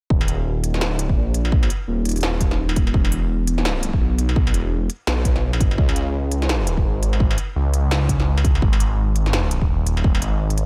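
Swung sixteenths at 169 BPM roll under a half-time 4/4 pulse in this short cut of half-time drum and bass, tuned to A4 = 439 Hz, with a spacious, cinematic mood. A heavy electronic kick runs from 0.1 to 10.1 seconds, joined almost at once by an industrial kit of crisp hi-hats, a clanging snare and struck metal. Both drum parts carry a tape-warm, produced character and were re-recorded in a large room, though the mix as a whole has little reverb. Up front sits a thick, swirling sawtooth bass, its detuned unison voices layered with a sine, saturated and treated with a phaser, sustaining between Eb1 and Db2 with a fast attack. The bass and kick sit at the same level, while the metallic kit stays further back, and the whole passage holds a single section until the bass and kit fall away at 10.7 seconds.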